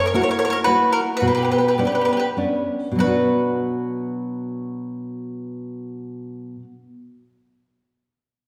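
Romantic and passionate, this short fragment of an Italian folk serenade in B minor moves in a lilting 3/4 at roughly 93 to 115 BPM, slowing down over its first 3 seconds. A bowl-back mandolin carries the melody up front, its picked double strings warm and tender in a narrow high register. A second mandolin sits further back with a mellow, round tone, playing a supporting line just beneath it. A nylon-string guitar provides fingerpicked accompaniment with a full-bodied, deep classical voice, and the small squeak of fingers on its strings is audible. The harmony moves from F#7 to Bmadd9 and settles on Bm at 3.0 seconds as the piece shifts into a new section, all of it bathed in the long, wet reverb of a recital hall or church.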